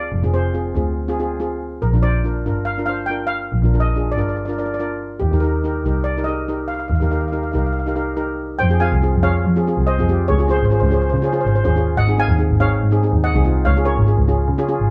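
A shimmering double-seconds steel pan sings the melody over a mellow lead pan sitting up front and a rich, floating double bass bowed sul tasto, lending this intense, dramatic calypso, cut from a longer piece, a dark, lightly reverberant sound.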